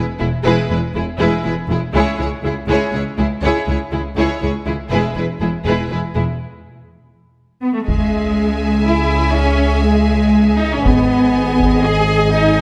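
Set in a moderate concert-hall reverb, this cut from a longer epic orchestral film score drives relentlessly and heroically at 121 BPM in 3/4 and C# minor, as lush bowed strings build from the start, with up-front cellos and a clear, focused double bass section anchoring smooth violas and a rich violin section on a second line, through a break at 6.4 seconds, until at 7.9 seconds a high vibrato violin melody enters over a heavy-stick taiko ensemble, compressed and saturated, which stops at 11.8 seconds.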